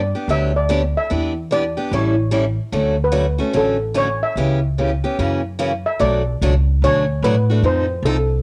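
A mellow, shimmering steel pan played with soft rubber sticks carries the melody through this charming, swinging fragment of acoustic string swing in the jazz manouche style, its vintage, band-limited tone coloured by cassette tape and plate reverb, as is the bright, picked steel-string acoustic guitar accompaniment with its audible finger squeak, while a woody pizzicato upright bass sits up front, all captured as a lightly reverberant home cassette recording moving from Gmaj7 toward F7.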